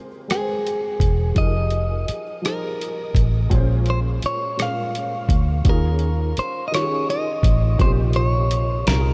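A dark baby grand piano with audible action noise and a chorus sheen opens this sultry, yearning slow six-eight R&B excerpt at 56 BPM in Bb dorian, joined at 0.3 seconds by a clean, picked electric guitar melody and a gritty, compressed sampler-style soul kit with a thumpy kick and rim click up front, then at 1.0 seconds by a round, foam-muted vintage bass, all in light reverb as lush ninth and eleventh chords move from Abmaj9 through Fm11, Bbm9 and Eb9sus4 before shifting to Dbmaj9#11/Bb at 7.8 seconds.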